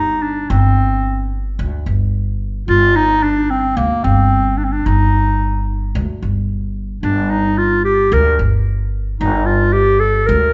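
A clear, present clarinet and a woody, growly pizzicato upright bass sound together from the first moment in this melancholic, soulful fragment of a Turkish makam ensemble piece, cut from a longer work. The clarinet carries the classical-style solo melody up front in a straight 4/4, while the steel-strung bass holds a low line, also up front. A moderate recital-hall reverb gives the pair the soft, rounded air of a church or concert hall, with the top end gently dulled.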